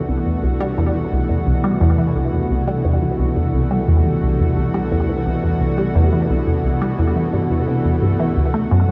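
Drenched in echo and a moderate plate reverb, this short cut from a longer piece of ambient, sequencer-driven space music feels expansive and cosmic, as a juicy, squelchy resonant blip pluck with phaser, cassette-tape coloring and analog delay repeats a riff over a lush, thick, warbling unison pad of detuned sawtooth and square waves that sustains chorused chords on C until a rootless D arrives at 8.4 seconds.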